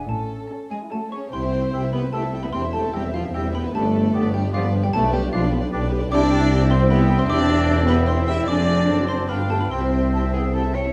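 Magical and playful, this whimsical cinematic film cue in C major moves along at 150 BPM in 3/4, where a dry, sharp xylophone with plastic mallets carries the melody alongside an expressive, vibrato-rich violin section, while dark, woody violins, an airy flute ensemble, a bright clarinet and a close-miked oboe add second lines, a smooth viola section fills in accompaniment, distant French horns hold sustained chords, and an up-front double bass section, cello section and roomy tuba (entering at 1.3 s) anchor the bass, all in a wet scoring-stage reverb with a dark, warm production that ends on a turn through D7/F# and G7 back to C.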